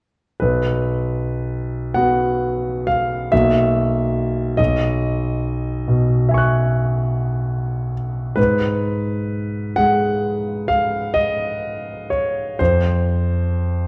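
Hazy and luminous, this brief cut from a longer impressionist solo piano piece drifts in B major at a slow, rubato 37-48 BPM in 9/8, its harmony moving from B5 through F#7/B and C#m11/B before settling on F5 near 12.6 seconds. The grand piano is clear, intimate and up front, spanning B1 to F#6 with its natural action noise audible. A wet scoring-stage reverb surrounds it from 0.4 to 13.9 seconds, within a dark, warm production.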